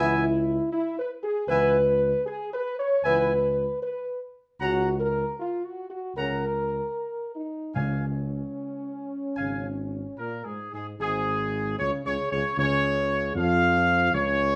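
In a straight, stately 4/4, this regal, majestic classical brass passage is cut from a longer piece. A clear trumpet section carries the melody up front with light vibrato and tight ensemble playing. Beneath it, a mellow French horn section holds sustained chords with a smooth top, while a dark trombone section adds more sustained chords from a distant, roomy position. A solo tuba anchors the bass with a soft attack. Timpani played with soft mallets sound a round, close Db between 7.8 and 8.9 seconds, and at 11.0 seconds the music settles into a new section. A moderate large-studio reverb lends the ensemble a grand, spacious presence.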